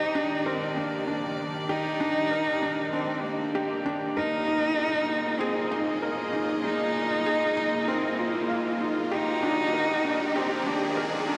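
A cello, a chamber string section and a felt-muted upright piano all begin together in this tender, luminous piano and strings electronica, cut from a longer piece in a straight 4/4. The single bowed cello sits up front carrying the melody, its tone nasal and boxy with vibrato, and tape echo trails its phrases. Beneath it the string ensemble holds sustained chords, earthy and smooth on top with a light vibrato, while the upright piano repeats a soft, mellow riff with thin felt and audible action noise, also touched by tape echo. From 1.3 seconds an electronic riser builds in the background, giving the passage the feel of a build-up as the harmony moves from Ebmaj7 to Bb7sus4 and back. The mix is dreamy and soaked in a huge ambient reverb, with a high-pass filter thinning its low end.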